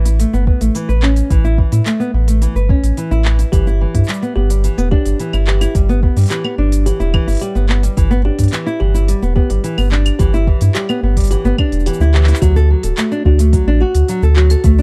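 A dry, close studio sound in a 1970s style frames this pastoral folktronica fragment, cut from a longer piece. A small, fingerpicked nylon-string guitar plays arpeggios through a low-pass filter and tape echo over a deep, round sine sub bass that sits up front, while a soft electronic kick and a crisp, produced kit of claves, handclaps, hi-hat and shaker keep the pulse. At 3.5 seconds, as the harmony moves from Aadd9 to G6, a delicate, tinkling music box with its own tape echo adds a dark, smooth second line, and the harmony arrives on D at 12.4 seconds.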